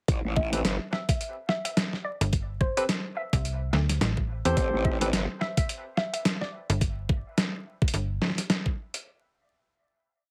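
Glitch hop with a playful, gritty mood, this short piece stays in a single drop built on an Am7 chord, with a swung 4/4 groove. An overdriven, knocking electronic kick and a gritty, pitched-down sampler-style kit with a tape-warm snare and closed hi-hat run throughout, the kit playing a swung beat with edits. A growling, wobbling growl bass with chorus and tube saturation bursts in twice, at 0.1 and 4.6 seconds, while a snappy, metallic slap-like FM bass enters at 2.2 seconds with chopped phrases answering it. Above them, a barky tine electric piano fires sparse, echoing chord stabs through overdrive and sidechain pumping, and a woody, wave-folded pluck adds short answering phrases coloured by analog chorus, cassette tape and dub echo. The mix is heavily compressed in a radio-like way, with vinyl crackle and a moderate studio reverb.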